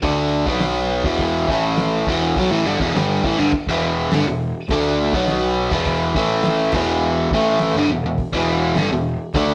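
A biting, double-tracked overdriven guitar sits up front, picking a raw, swaggering garage rock riff over power chords on B, E and A, while a fuzzy, tube-saturated picked bass and a cloth-damped, thuddy drum kit with dark cymbals, fat snare and tight kick sit further back in this rough rehearsal-room recording cut from a longer piece.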